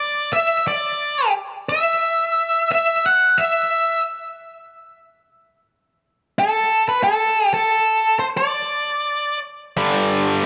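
In a straight 4/4 with a half-time feel through the opening section, this cathartic, anthemic rock excerpt opens on a dark, fuzzy octave-fuzz lead guitar carrying the melody up front, its distortion trailed by analog delay over unaccompanied ground until 9.4 seconds. At 9.8 seconds a bright, double-tracked, high-gain guitar riff enters on a G5 power chord and runs briefly to 10.4 seconds. Light reverb and a digital ambience frame both parts.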